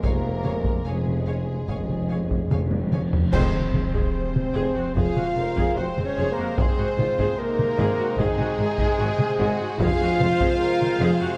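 Heroic and dramatic, this cinematic orchestral film score excerpt moves at 74 BPM in F phrygian, opening with a timpani fill, a drum fill and bright cymbals with concert bass drum before a band accent at 3.3 s, where a silver, airy concert flute joins in the background. Lush, vibrato-rich violins carry the melody over a second violin line, smooth viola accompaniment, mellow French horns, very quiet trombones, and a low bass of tuba, cellos and distant double basses, while a hard-hit, compressed and saturated taiko ensemble drives the rhythm throughout. The dark production sits in a moderate scoring stage reverb, with the chords moving from Db/F to Fm, Ab and back to Fm.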